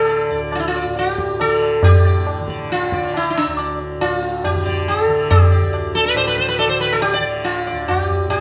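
A plectrum-plucked sitar with buzzing sympathetic strings sings a solemn, longing Hindustani classical melody, round and up front, over a softly plucked, shimmering tanpura drone sitting lower in the mix, as a high-tuned, ringing, close-miked tabla joins at 0.1 seconds and the live ensemble pushes steadily faster from 139 BPM in 4/4 inside the generous wash of a large studio's reverb.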